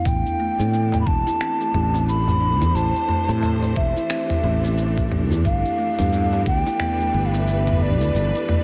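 An airy bamboo bansuri carries the melody up front in this meditative, organic downtempo excerpt in A minor, its mellow tone marked by vibrato, a crisp attack and a touch of digital delay. Beneath it, a growly fretless electric bass sits bright and direct, pumping with sidechain alongside a lush studio string section that holds sustained chords with expressive vibrato and portamento. A woody kalimba rings out arpeggios with a thumbnail pluck, also touched by digital delay. The groove moves at 89 BPM in 4/4 with a 16th-note swing, driven by a gritty, tape-warm sampler-style kit of cabasa, finger snaps and toms, plus a thumpy electronic kick that drops out at 6.6 s, both set in studio reverb. A deep clay darbuka, played close and dry with hard hands, enters at 0.4 s very quietly, while the harmony shifts from Am to G in a small, lightly reverberant room.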